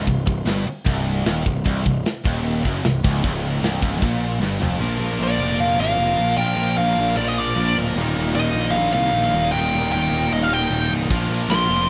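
Driving straight 4/4 at 152 BPM, this dark, relentless heavy metal excerpt stacks three picked rhythm guitars (a double-tracked, biting overdriven one and two high-gain distorted ones, one scooped) beneath a growly, punchy fuzz bass up front, while a tight drum kit with bright cymbals pounds through a fill at 4.4 seconds, drops out, then returns at 11.1 seconds, and a dark high-gain lead guitar enters at 5.2 seconds over a Bb and Eb shift, all in a rough home demo mix with light small-room reverb.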